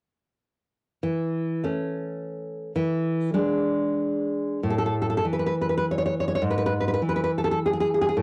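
A cassette home recording with light reverb and studio ambience opens at 1.0 s onto a sunny, warm romantic piece for solo classical guitar in A major, tuned slightly below standard, in 3/4 with a rubato feel drifting between 82 and 111 BPM, where a full-bodied, fingerpicked nylon-string guitar sits up front and moves from its first phrase into a second section at 4.6 s before this short cut from a longer piece ends at 8.2 s.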